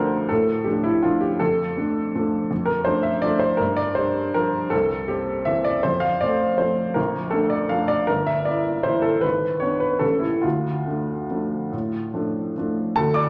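A wet recital hall reverb with a 1.6-second tail surrounds a close, up-front upright piano, its woody tone and audible action noise giving the sound an intimate, natural character. This is a classical piano waltz in D minor, a 13-second fragment of a longer piece, and its mood is bittersweet and wistful. The solo piano moves in 3/4 with a rubato feel, the tempo drifting between 138 and 170 BPM, and it spans a range from G1 to D6. The instrument is tuned to A4 = 444 Hz and sounds slightly detuned. The harmony passes from D minor through Gm7, C7, F and Bbmaj7, then darkens through Em7b5/G, G#dim and A7b9 before settling back on D minor at 10.4 seconds.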